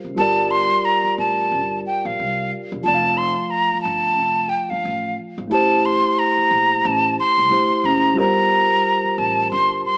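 R&B with a neo-soul lean, this short excerpt cut from a longer piece has a sultry, introspective mood and a relaxed swung sixteenth-note feel. A mellow tine electric piano carries the chords up front in a clean, direct tone, moving from Gm11 through F and Am7 before returning to Gm11. Beneath it, a pizzicato upright bass on gut strings adds a woody, thumpy low end, sitting well back in the mix and stopping at 9.8 seconds. The melody belongs to a breathy, bright jazz flute, close-miked and expressive with vibrato and a soft attack, entering at 0.2 seconds and standing out as the loudest part. A moderate echo chamber reverb and an AM-radio coloring give the whole piece a hazy, vintage cast.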